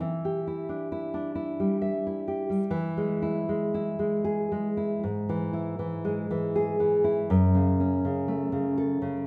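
Wistful and melancholic, this romantic piece for solo classical guitar drifts in 3/4 with a rubato feel between 65 and 83 BPM in E major. The nylon-string guitar sits up front with a deep, thumb-plucked tone and audible finger squeak, ringing in a wet recital-hall reverb as the harmony turns from E minor to E major at 2.7 seconds and reaches F-sharp minor at 7.3 seconds. This short fragment is cut from a longer piece.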